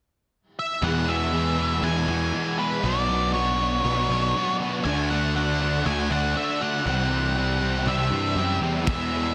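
Wistful and blissful, this shoegaze and dream pop rock excerpt in E mixolydian moves at 119 BPM over an E, Bmadd9, D and C progression: a dark octave-fuzz lead guitar with distortion and digital delay carries the up-front melody from 0.6 s, joined at 0.8 s by a warm, fuzzy picked electric bass, also up front, and three background riffing guitars (a bright, crunchy double-tracked one with spring reverb, a compressed overdriven electric with lush chorus, and a hollow-bodied semi-hollow with reverse reverb), while a loose indie drum kit with dark cymbals and a tight kick lands only a crash and kick at 8.9 s.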